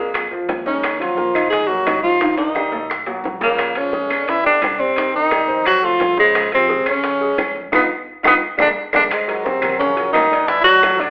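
A close-miked tenor saxophone carries the melody up front, with vibrato and a soft attack, in this fiery, sophisticated Afro-Cuban jazz passage cut from a longer piece. It is shadowed by a dark, breathy trombone on a second line and an intimate concert grand piano with audible action noise and deep bass. Behind them sit a woody, thumpy pizzicato upright bass on gut strings, distant claves, bright congas, ringing, saturated timbales and tight, high-tuned bongos, with drum fills at 2.2 and 8.4 seconds and a band accent at 7.7 seconds, all played live in one room with wet large-studio reverb and a telephone-like sound.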